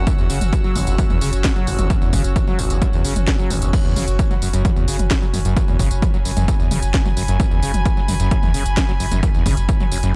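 Driving peak-time techno with a dark, industrial mood, this short cut from a longer piece moves in a straight 4/4 pulse. A squelchy, resonant sawtooth acid bass carries the riff, its overdriven, plucky tone given lush chorus and tape echo. Underneath sits a deep, round sine sub bass, warmed by tube saturation and rolled off with a low-pass filter. A punchy electronic kick drum sits up front from 0.1 seconds, joined by a techno kit of cracking snare, smooth hi-hats, crash cymbal, tambourine and toms. A bowed string section with a reedy, gut-string, period-style tone and a smooth top adds a high texture, pumping with the sidechain along with the acid bass, sub bass and most of the kit. The mix is dry and gritty, with transformer saturation giving it a hard-edged hardware character.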